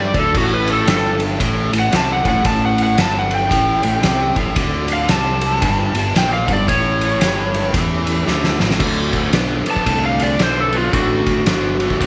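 Driving and gritty, this excerpt from a longer blues rock and southern rock power-trio piece moves at 113 BPM in 4/4 with a swung eighth-note feel, centered in D mixolydian. An overdriven slide guitar, played with fingerpicks and treated with slapback echo, carries the melody as a solo through the first 8.8 seconds, over a biting, double-tracked overdriven guitar riff picked low in the register. Beneath them, a fuzz-soaked fingered electric bass sounds round and punchy, while a very quiet tonewheel organ holds smooth, clean sustained chords through a rotary speaker with chorus vibrato and audible key click. The oversized, low-tuned acoustic drum kit sits up front with a fat snare, dark cymbals and a saturated, pumping stone-room character, and a drum fill at 8.3 seconds leads into a new section at 8.8 seconds. The harmony moves through A7, D7 and G7, and the whole band plays in a small room with light reverb.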